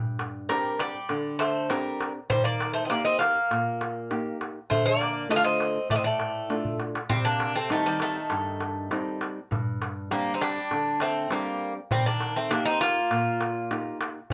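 Greek folk in a cool, moody vein at 100 BPM in 4/4, this short excerpt is cut from a longer piece and set in a small room, moving through Gsus4, Eb, Dm and Cm chords across two passes of the same section. Up front, a bright, metallic, picked bouzouki carries the melody from G3 to F5 on double strings with some octave-doubled courses, while a second bouzouki plays a lower line beneath it and a small, fingerpicked nylon-string guitar supplies accompaniment. A clay-shell darbuka with natural skin, played with soft hands and given a compressed, saturated sound, drives the rhythm and marks the turn into the second pass with a fill from 6.6 to 7.1 seconds.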